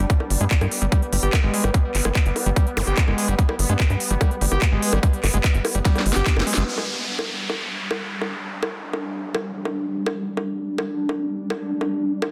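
A straight 4/4 pulse at 146 BPM drives this intense psychedelic trance fragment in G major, where an overdriven, tight kick and a layered kit of cracking snare, crisp hats, handclaps and bongos sit up front beside a punchy sawtooth sequencer bass and a squelchy, gritty acid riff with delay and sidechain pumping, punctuated by an electronic zap, until a drum fill and band accent close the first section and the kick and basses fall away by 6.6 seconds, leaving the drum kit and a bubbling, detuned pad of random filter steps with chorus and its own reverb to carry a second section as a downlifter arrives at 6.7 seconds, in a dense, heavily limited modern mix with light reverb.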